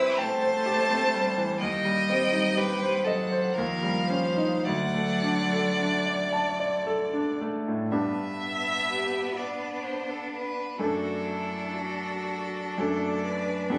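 Captured on a phone in the room with light studio reverb, this short passage from a slow romantic movement for piano quartet in G major unfolds in a serene, tender 3/4 at around 52-67 BPM with a gentle rubato. A distant, clear violin sings the melody with vibrato, while a rich, smooth-topped second violin and a focused cello weave bowed second lines beneath it. An up-front grand piano with a vintage, short-sustained tone carries the accompaniment throughout, and the harmony settles onto G at 7.9 seconds as the music turns to a new phrase.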